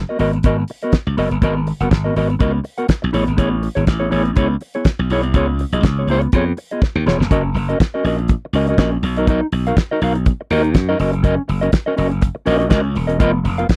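Glamorous and sultry, this short disco excerpt rides a swung 4/4 groove as a growly, punchy slap bass and a dark, fat-snared 70s drum kit with a tight kick sit up front alongside a clean, fingered electric guitar shimmering with tremolo through lush ninth and seventh chords, a drum fill at 6.8 seconds carrying the dry, close studio sound into its second section.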